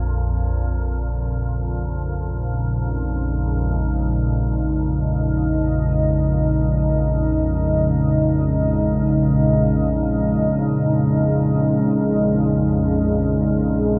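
Dark ambient drone, cavernous and desolate, in which an evolving, detuned sawtooth pad with chorus holds sustained Dbsus2/Bb chords up front over a calm, organ-like sine drone in low unison, while a very quiet bronze singing bowl, struck with a wooden striker, rings bright and metallic with slow beating, the whole 14-second fragment of a longer piece steeped in a wet cathedral reverb and the character of cassette tape.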